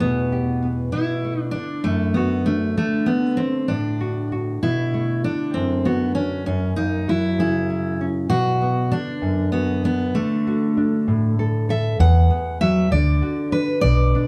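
A picked steel-string acoustic guitar carries a reflective, wistful melody in a straight 6/8 over a woody, fingerpicked nylon-string guitar with old strings, the pair sitting up front in a small, reverberant room heard from further back as the chords drift through Em, Bm7, D and F#7, until a dark, round hollow-body electric bass joins at 12.0 seconds beneath Esus2 and D in this wistful folk fragment cut from a longer piece.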